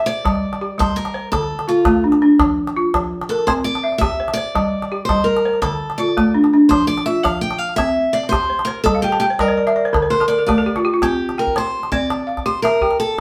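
A warm, up-front picked steel-string acoustic guitar leads this joyful West African string and xylophone piece with a solo melody from the start until 11.0 seconds at 111 BPM in a straight 12/8. Alongside it, a woody, round balafon struck with rubber mallets plays arpeggios and adds a fill from 9.0 seconds, while a deep calabash supplies percussion. The band plays live in one room with wet studio reverb, cycling through Gm, Dm, Fsus4 and C before a brief closing section settles on C in this excerpt cut from a longer piece.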